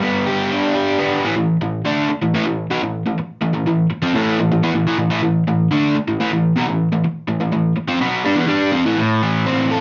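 Rock in A minor at 124 BPM in a straight 4/4, this gritty, swaggering fragment of a longer piece features an overdriven electric guitar, picked and double-tracked and placed up front in a small live room with moderate reverb and dulled highs, moving from a G chord to A5 at 1.2 seconds before settling on A minor at 9.0 seconds.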